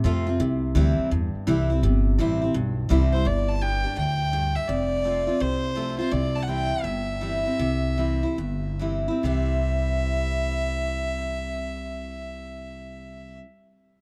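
Honky-tonk and classic country in C major with an easygoing, down-home mood, swinging in 4/4 at 134-168 BPM, with a bright picked steel-string dreadnought guitar (finger squeak audible) picking out accompaniment over woody, thumpy pizzicato upright bass on gut strings, and an earthy, clear bowed fiddle carrying the melody from 3.1 s. The harmony moves through C, G and F before returning to C at 6.1 s, where the groove slows until 9.2 s. It is all in a dark production with light reverb, with the three players up front and the fiddle close, in this short excerpt cut from a longer piece.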